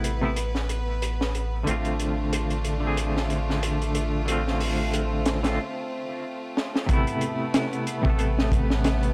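Trip hop at 92 BPM in A harmonic minor, this dark, cinematic excerpt swings its sixteenths over a crunchy, gritty breakbeat kit with a punchy kick, high-tuned snare and rolled-off top, while a round, deep dub sub bass with tube saturation holds A1 up front. A clean, fingered semi-hollow electric guitar carries the accompaniment through tremolo, tape echo and 12-bit sampler grit, and a biting, intense violin section sustains chords with light vibrato, moving from Amadd9 to F6/A and back. A break arrives at 5.6 seconds, capped by a drum fill at 6.6 seconds, before a new section opens at 6.9 seconds, the whole excerpt sitting in light reverb and studio ambience.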